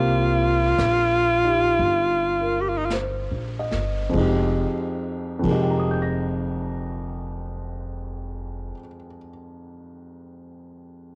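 A clear, punchy tenor saxophone opens this smoky, wistful jazz ballad fragment, joined at once by an intimate grand piano and a woody, thumpy upright bass. The saxophone plays a short solo melody in a jazz style, with vibrato, scooped notes and a smooth but forceful top, and it carries a cassette-tape character before falling away at 2.9 seconds. A vintage brush drum kit slips in at 0.8 seconds, dark and rolled-off, with a tight kick, a medium-tuned snare and dark cymbals, its brushes also touched by cassette-tape colour. The piece sits in F minor in 4/4 with a swung eighth-note feel, its tempo ranging from 46 to 66 BPM and slowing through the opening phrase over a C7sus4 chord before moving to Fm9 as the next section begins. The natural-sounding piano, with audible action noise, and the pizzicato bass sit up front in a small, lightly reverberant room, and the piano lingers on after the others drop away. 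The whole has the homespun feel of a home recording on cassette, tuned slightly low at A4 = 437 Hz.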